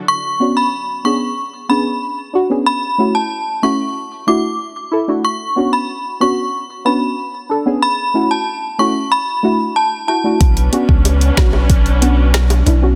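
Dancehall with a bouncy, hypnotic feel, heard in a short cut from a longer piece. A chiming, inharmonic FM synth melody rings high above the mix from 0.1 seconds, its long release thickened by ensemble chorus and digital delay. Beneath it, a deep, mellow chord stab with a detuned, ring-modulated edge and a moving notch carries the accompaniment, pumping against a sidechain as the harmony cycles through minor, seventh and added-ninth chords. At 10.4 seconds the groove arrives: an electronic afro-pop kit with a deep kick, woody snare, metallic hats, snaps and rim clicks sits up front alongside a punchy sine sub bass with a pitch-drop attack, while lush, bowed symphonic strings return with vibrato. From 10.7 seconds, round, low-tuned bongos join in the background. Light reverb and a dense, heavily limited modern master keep the sound close and full.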